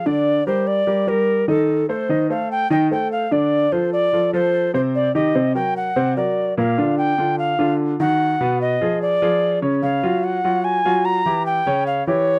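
Jazz at 147 BPM in a lively, sunny, straight 4/4, with an airy, reedy alto ocarina singing the melody up front with vibrato and a soft attack over a natural-sounding grand piano accompaniment, captured in a dry, close 1970s-style studio sound with light reverb, in a passage cut from a longer piece that moves through chords such as Ebmaj7, Gm7 and Gbmaj9.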